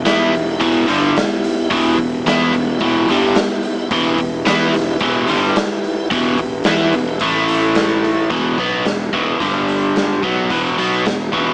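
An up-front, double-tracked overdriven electric guitar riff leads this gritty, brooding classic rock excerpt alongside a growly fuzz bass, a raw garage drum kit with a punchy kick in a bright stone room, and a piping tonewheel organ with slow rotary speaker and key click holding sustained chords in the background until 8.3 s, the whole mix set in moderate plate reverb with a small-speaker sound.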